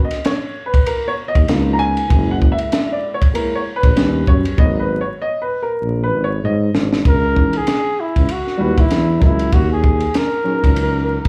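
Jazz-hop at 97 BPM with a lazy 16th-note swing in C# dorian, this cool, smoky excerpt opens on a dark, vintage concert grand piano with plate reverb and slapback echo, taking a solo passage over a compact cocktail kit whose high-tuned snare, punchy kick, hi-hat and ride sit close and rolled-off, capped by a drum fill. A mellow, breathy tuba enters on bass at 1.4 seconds with vibrato and scooped notes. At 7.1 seconds a whispered, intimate flugelhorn takes the melody over chords like C#m69 and D#m7, all wrapped in the club reverb, vinyl crackle and PA haze of a live gig.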